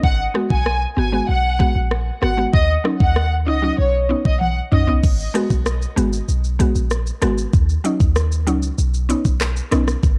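Dancehall at 96 BPM in G# minor, this sultry, hypnotic passage is cut from a longer piece and cycles through G#m7, D#m7 and Badd9. A lush symphonic violin section carries the melody up front with expressive vibrato and an analog delay, playing only until 4.9 seconds. Beneath it, a deep, boomy 808-style bass with a clean sine tone and fast, decaying attack holds the low end throughout. The electronic afro-pop drum kit is overdriven and tape-coloured, with a knocking kick, crisp hats, handclaps, rim clicks, shaker, toms and crash cymbal, plus a drum fill from 4.4 to 5.0 seconds leading into the second section. A woody, round FM synth pluck with a detuned, chorused shimmer adds short percussive accompaniment from 0.3 seconds, all set in a digital ambience with the character of a home cassette recording.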